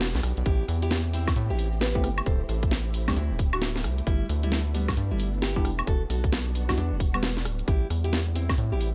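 Swung sixteenths at 133 BPM drive this late-night, bouncy two-step UK garage excerpt, where an up-front garage kit of cracking snare, bright hats, rim click and woodblock is joined by a tight electronic kick from 0.5 s and a grainy cabasa set in the background, beneath a dark, rubbery square bass with a resonant filter pluck, while a fingerpicked classical nylon-string guitar carries the melody through delay over silky, chorused string-machine chords that pump softly behind, and a clean tine electric piano adds phased, delayed stabs from 2.0 to 6.8 s across an Am9, D7sus4, G6, Em9 progression.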